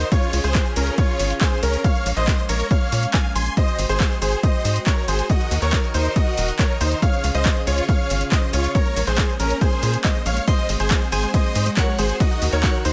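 Soaring and euphoric, this uplifting trance excerpt in Bb minor drives at 139 BPM, where a huge, detuned supersaw lead carries the melody with delay and sidechain pumping over a worn, gritty concert grand piano second line and earthy chamber strings holding sustained chords in the background. A punchy layered kick sits up front with a tight, driving sequencer bass, while an overdriven analog drum machine adds handclaps, hi-hat, ride cymbal and shaker, re-recorded in a large room. A very quiet electronic swell enters at 9.8 seconds, then a crystalline FM bell with chorus and dub echo and a lush, ring-modulated unison pluck playing arpeggios join near 10.5 seconds, all in a dry mix.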